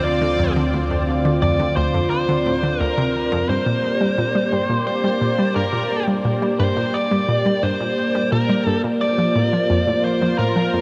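Expansive and mysterious, this excerpt of sequencer-driven ambient space music in G minor moves at 87 BPM in a straight 4/4, with a biting, overdriven lead guitar carrying an up-front melody through delay over a sweeping, detuned sawtooth pad of chorused sustained chords, a round, bright analog pluck riff with chorus and delay entering at 0.2 s, and a fat, nasal, saturated analog bass that drops out at 3.5 s as the harmony shifts from Dm7 to Gm and later Fsus4, all set in a huge, wet reverb with an 8.2-second tail.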